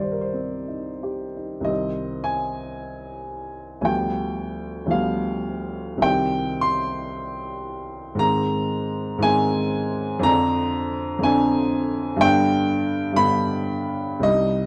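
Classical romantic nocturne fragment for solo upright piano, mournful and melancholic in a slow, rubato 4/4, its woody, open tone sitting up front and close-miked in a moderate recital hall reverb as the harmony moves from C minor through G7, A-flat and a half-diminished chord before settling on G.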